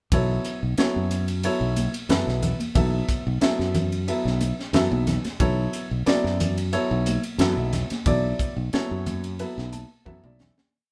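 Electric jazz fusion with a driving, slick feel, built on a single Bm9 groove in which a smooth, vintage grand piano plays syncopated quartal chord stabs over a bright, punchy fretless electric bass riff and a crisp, up-front drum kit laying down a fusion ride groove with a high-tuned snare in a small, pumping room, while ringing, close congas play a loose pattern in the background, until the fade that begins at 8.1 seconds carries a piano fill from 9.4 seconds and a drum fill from 10.1 seconds.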